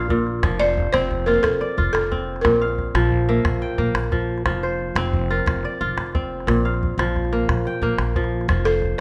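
The rhythm moves in a straight 12/8 at 119 dotted-quarter beats per minute, giving this West African string and xylophone excerpt in F major a hypnotic, warm pull. Up front, a fingerpicked kora spins crisp, ringing arpeggios throughout, while a dark, thumpy upright bass with gut strings plays pizzicato underneath and a small calabash keeps the percussion going. A buzzing balafon, struck with rubber mallets, carries the woody, dry melody from 0.6 to 3.7 seconds and returns briefly at 8.7 seconds. The harmony shifts between F and B-flat chords over a single section. A moderate recital-hall reverb gives the performance a sense of space, and the passage is cut from a longer piece.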